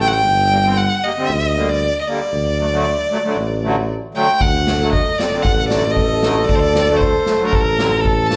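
Klezmer at 116 BPM in D phrygian dominant, bittersweet and soulful, with a clear, focused violin carrying the vibrato-laced bowed melody up front over reedy, sweet accordion with light tremolo tuning and a punchy tuba bass, all moving through Gm and D, until a dark, breathy trombone second line and a boomy street-band drum kit of kick and snare join at 4.4 seconds, the whole heard as a live gig through the venue's PA with club reverb and slapback echo on the violin, accordion and trombone.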